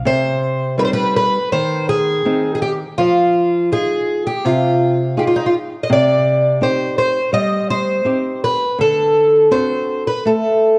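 Fado-style ballad cut from a longer piece, mournful and passionate in a loose rubato feel, with a shimmering, octave-doubled fingerpicked twelve-string acoustic guitar carrying the boxy parlour-toned melody up front over a small, fingerpicked nylon-string guitar accompaniment with audible finger squeak, both sounding from 0.1 seconds through a light reverb and the warbly pitch drift of worn old cassette tape as the chords move from Cm to Fm7 and back before landing on D7.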